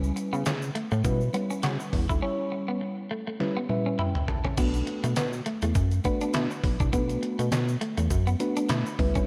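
Slick and funky, this early-eighties boogie funk excerpt moves at 102 BPM in 4/4 with a light 16th-note swing, sitting in B minor and shifting from a C#m7b5 chord to Bm7 at 4.6 seconds. A chorused synth bass sits up front with a glossy, retro pulse-and-sawtooth tone and a quick filter pluck, while a mellow FM electric piano, round and dark with chorus and phaser, supplies the accompaniment and adds fills from 3.4 to 4.6 seconds and again near the close. A clean electric guitar enters at 0.2 seconds with a picked, compressed riff bathed in lush chorus. The detuned 8-bit drum machine arrives at the same moment with a thumpy kick, medium-tuned snare, hi-hat, handclaps, toms and crash, its tape-warm sampler character placed up front, and it plays a fill alongside the piano's first one. A grainy tube shaker ticks away in the background, and the whole mix is soaked in a dreamy hall reverb that gives it a lush, floating sheen.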